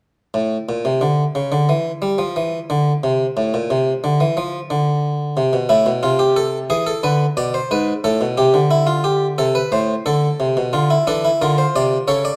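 Classical baroque-style three-part fugue for solo harpsichord, contemplative and serious in a steady 4/4. The single Italian-style instrument, with one set of strings, sounds plucked, round and full, close and up front in a moderate recital-hall reverb. It enters at 0.3 s, moves through A minor and E7, and settles on D minor at 10.7 s before the cut at 12.4 s.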